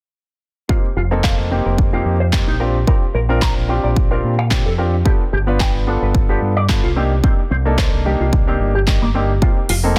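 A dense, heavily limited modern mix with little reverb carries this sunny, feel-good nu-disco excerpt, where a punchy, up-front electronic kick, a concert grand piano with deep bass and delay, and a bright, twangy electric guitar riff shaped by an envelope filter, lush chorus and delay all enter at 0.7 seconds. A fingered electric bass with its own envelope filter joins up front at 1.0 second, followed at 1.2 seconds by a house kit of handclaps and metallic hi-hats in a small room. The lightly swung sixteenths ride a chord cycle moving from F7sus4 through Bb69, G7 and Cm9 before returning to F7sus4.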